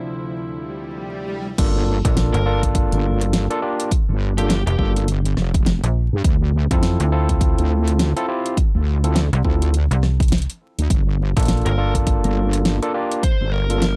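Soft, bowed chamber strings roughened by 12-bit sampler grit and a warbling, nostalgic tape-like pad open this swaggering, funky glitch hop in G dorian, with an electronic swell leading into the drop at 1.6 s, where a heavy, detuned wobble bass, a punchy layered kick and a pop kit with fat snare and metallic hats, joined at 2.0 s by a snappy, metallic FM slap bass, drive a swung 103 BPM groove under barky, overdriven tine electric piano stabs with sidechain pumping and analog delay, while a dark, fuzz-distorted lead guitar carries the melody from 2.3 s and returns near the close, the whole dry, gritty recording dusted with vinyl crackle.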